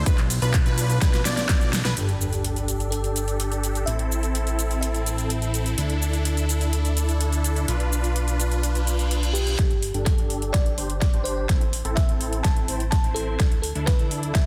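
This euphoric, anthemic festival progressive house excerpt opens on a drop. A catchy plucky unison lead plays arpeggios over huge, lush supersaw chords carrying a riff, with a fat, up-front analog bass beneath, and all three pump with sidechain. The lead is gone by 1.9 seconds. The chords, colored by cassette tape, a low-pass filter, delay and a filter sweep, continue under a big-room dance drum kit whose overdriven sound brings a huge snare, metallic hats, handclaps, ride cymbal and shaker. A layered, tape-warm electronic kick sits up front at the start, then drops out and returns at 9.6 seconds for the build-up as a drum fill drives toward the close. A sub drop impact and a reverse cymbal sit in the background, and a bell-like FM electric piano with chorus and delay adds a sparkling, warbling vintage melody in two passages, all over chords moving through Bdim, Gsus2, Am and Dsus2 under light reverb and a dense, heavily limited modern master.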